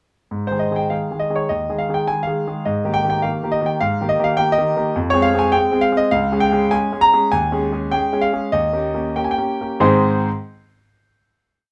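A clear concert grand piano sits up front in light reverb, its smooth, vintage tone carrying a deep bass beneath a single-line melody and repeated chords. This short classical-period sonatina is playful and graceful, played in 4/4 with rubato, and it slows from 3.8 to 9.8 seconds as the harmony moves through F minor and E-flat seventh chords. It comes to rest on a final A-flat chord at 9.8 seconds, with the piano sounding until 10.3 seconds.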